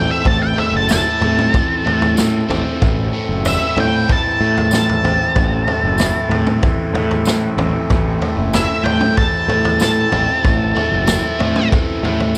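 An up-front octave-fuzz lead guitar, distorted and trailed by tape echo, plays a dark, hypnotic solo over a steady A minor chord in this 94 BPM psychedelic rock excerpt, backed by a double-tracked overdriven semi-hollow guitar riff through phaser, a round, punchy fuzz bass with overdrive, a mid-forward vintage drum kit with a rolled-off top that enters at 0.3 s, a reedy, nasal harmonium holding chords in the background, and a jingly tambourine from 0.9 s, set in light reverb and small-room ambience.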